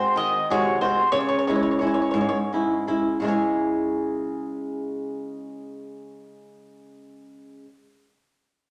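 In a 6/8 at about 53-64 BPM that slows over the first 3.2 seconds, this brief, wistful and passionate Italian folk serenade excerpt in C# minor opens with a woody, double-strung picked mandolin carrying the melody up front until 2.4 seconds, while a bright fingerpicked flamenco guitar, its finger squeaks audible, accompanies through a G#7 to C#m turn and plays on until 7.7 seconds, all set in a lush large-studio reverb.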